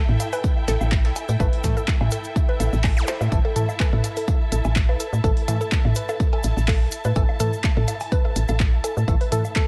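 A punchy, overdriven electronic kick sits up front in this hypnotic, quirky minimal techno excerpt, with a round, woody FM bass close beside it, pumping under sidechain. A hollow, bouncy square-wave pluck carries the riff through chorus and tape echo, its detuned tone shaped by a moving notch, while a nasal, organ-like stab enters at 1.4 seconds in the background, wet with dub echo. Underneath, a dark, lush string section adds bowed texture with expressive vibrato and a smooth top, breathing with the same pumping. The rhythm bed is busy and swung: a clicky minimal kit with handclaps and a tiny snare, tape-warm electronic toms and woodblock, a grainy, close cabasa, and a very quiet, gritty breakbeat kit with a high-tuned snare and tambourine. A drum fill lands at 3.1 seconds alongside a brief electronic zap, all set in an echo-heavy digital ambience.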